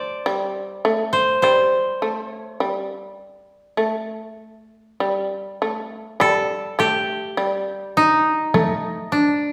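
A reverberant recital-hall sound frames this calm, austere Japanese chamber piece, cut from a longer work, in D in a free, rubato 51 BPM: an up-front, woody koto carries the melody, a buzzing, plectrum-plucked fretless shamisen holds a low second line, and a close taiko ensemble struck with heavy sticks joins from 6.2 to 8.8 seconds.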